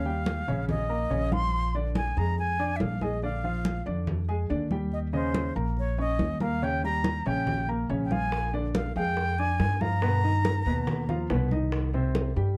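A breathy concert flute with vibrato carries the melody over a woody, pizzicato upright bass in this lively, danceable Afro-Cuban jazz excerpt at 141 BPM in Bb mixolydian. A mellow baby grand piano with audible action noise and ringing congas join almost at once, moving through Eb9 and Bb7 toward a G7alt and Cm, and tight, high-tuned bongos enter at 8.3 seconds. The flute stops at 11.3 seconds, and light reverb sits over a dark, warm production.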